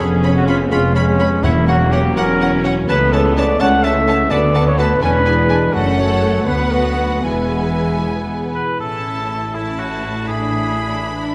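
Bathed in a wet scoring-stage reverb, this stormy, urgent excerpt from a fast romantic orchestral movement in a rubato 6/8 sets a lush, vibrato-rich violin melody over a distant second violin line, smooth background violas, dark sustained French horn chords, ringing harp arpeggios and a bowed cello and double bass foundation, while an up-front mellow trumpet punches out vintage stabs, a very quiet, dry timpani figure sounds at 1.4 s, and a clear solo oboe takes up a second line from 8.5 s.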